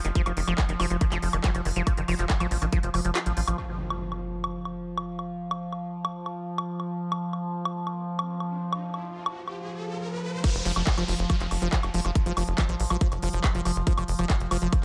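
Psychedelic trance at 140 BPM in F major, cut from a longer piece with a psychedelic, alien mood. A nasal, resonant drone with moving overtones sustains throughout under chorus and pumping, while a squelchy acid bass riff with delay and a punchy sawtooth sequencer bass drive the opening alongside an overdriven techno kit of crash, handclaps, smooth hats and woodblock and an up-front, tape-warm kick. The kick drops out at 3.2 seconds, an electronic impact and riser carry a break from 3.6 seconds, and the full groove returns in a drop at 10.4 seconds, all with light reverb and a dark top end.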